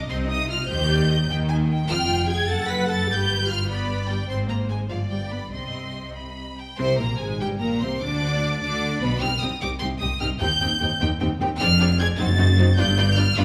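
Focused, up-front violins with vibrato carry the high melody of this stormy, urgent classical-period string orchestra excerpt in C minor, moving at 100 BPM in a rubato 6/8 over soft-attack second violins, smooth, even violas, rich, intense cellos and distant, expressive double basses, all bowed in a wet recital hall, with the harmony darkening toward an F#dim7 and a closing G7 near 12.8 seconds.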